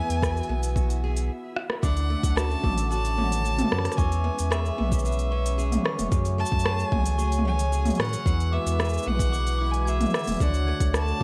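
Hopeful and warm, this folktronica excerpt moves at 112 BPM in D lydian, with a rich, bowed solo violin carrying the melody through tape echo over a chorused, airy analog pad, a bright picked parlour steel-string acoustic guitar playing arpeggios, and a round, up-front sub bass with tube saturation. A soft, overdriven electronic kick and an organic electronic kit of smooth hi-hat, rim click, shaker and toms drive the groove, pausing briefly from 1.3 seconds with a drum fill at 1.6 seconds, while a reversed, dreamy swelling texture sits very quietly at the edges. From 1.8 seconds a dry, bell-like glockenspiel played with soft plastic mallets adds a ringing second line through digital delay, as chords move from Eadd9 through Dmaj7, C#m7 and F#madd9 in a dark, warm digital ambience.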